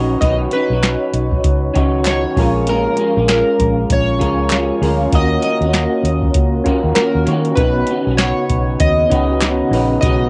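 This laid-back, nostalgic indie and bedroom pop fragment opens with glossy, chorused retro synth keys carrying the melody over an electric guitar played through a small old amp, slightly broken-up and compressed with ensemble chorus and vibrato. Soft, round electric-piano-like synth keys add mellow accompaniment, while a dark, foam-muted fingered bass sits up front with a punchy tone. A soft vintage rhythm box comes in at 0.2 seconds with a deep kick, crisp snare and metallic hats, a gentle swing giving the groove its lilt, and a hollow group handclap joins in the background from 0.8 seconds. At 8.0 seconds a very quiet, warbling tape-like pad enters with sustained, detuned chords. The harmony moves from B through A#m7 and D#m7 to Badd9. The whole piece has a lo-fi cassette home-recording character with light reverb and a dulled top end, and the lead keys also trail an analog delay.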